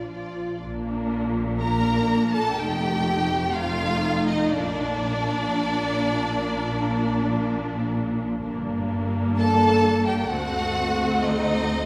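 Classical slow romantic movement for string orchestra, serene and lyrical at 62 BPM in a rubato 4/4 in Bb major, where a focused violin second line, woody up-front violas, dark close double basses and softly attacked cellos in the background hold the harmony from the start before the expressive melody violins enter at 1.6 seconds, all bathed in a wet church reverb.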